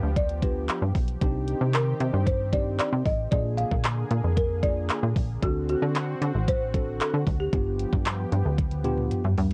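A straight 4/4 pulse at 114 BPM drives this confident, energetic dance-pop excerpt in C minor, cut from a longer piece, with an up-front pop drum kit of handclaps, hi-hat, toms and a knocking kick, its layered electronic sound overdriven and re-recorded in a small room, entering at 0.2 seconds and closing with a fill from 8.6 seconds. Underneath, a plucky analog bass carries the low end with a punchy, funky, wave-folded tone, fast attack and decaying filter pluck, pumping with the sidechain. A lush unison pad holds sustained chords with a thick, detuned, vintage character, slow attack and chorus, also pumping. A tine electric piano adds accompaniment from 0.4 seconds, clean and direct yet slightly out of tune, while a folk marimba with soft mallets takes the melody, its woody, rustic, round tone sent through an analog delay. The chords move from G7 to Cmadd9, Bb7 and D7 before returning to G7, and the whole mix sits dry, colored by worn cassette tape with warbly pitch drift.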